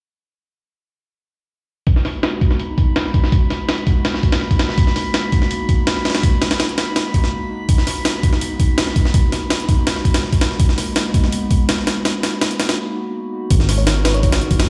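A warbling, lo-fi pad on a G#m9 chord and a gritty, pitched-up breakbeat kit with a thumpy kick and high-tuned snare open this nostalgic, atmospheric drum and bass cut at 1.9 s, the up-front drums under a filter sweep while a calm, glassy texture of drifting overtones floats in the background. After a short break at 12.8 s, the drop at 13.5 s brings in a deep, rumbling detuned saw bass, and a sparkling, bell-like FM electric piano with phaser and dub echo flickers just after. The whole piece sounds as if played on a big sound system in a bare stone room.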